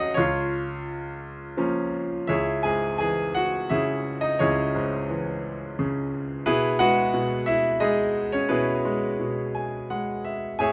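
A bright, up-front grand piano opens this cool, moody fragment of a longer lyrical classical solo in C# minor, moving in a rubato 3/4 around 86 BPM, its natural tone carrying through a moderate studio reverb and a faint mains hum as the harmony shifts from C# minor to E over B before a closing piano fill at 9.2 seconds.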